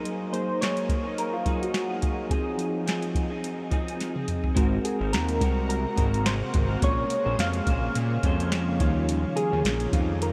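A soft vintage rhythm box sits up front at 106 BPM in 4/4 with a gentle swing, its deep kick, crisp snare and metallic hats driving this wistful, mellow indie and bedroom pop excerpt, with a drum fill at 4.0 seconds. Slightly broken-up electric guitar with chorus and vibrato and a worn, slightly out-of-tune tine electric piano with a cassette-tape character play the accompaniment, while round, triangle-toned synth keys carry the melody through lush chorus and tape echo. A fat, detuned sawtooth bass arrives up front at 4.6 seconds, and a shimmering, ethereal pad joins at 5.5 seconds, the whole mix soaked in huge, dreamy reverb over chords moving from Gb69 to Eb9.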